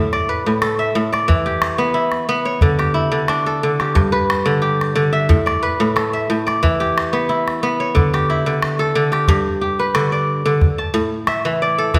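West African traditional music with a hypnotic feel, this short cut from a longer piece features a bright, fingerpicked kora playing ringing arpeggios up front over the small, acoustic sound of a calabash, set in a reverberant recital hall and moving into a new section at 9.3 seconds.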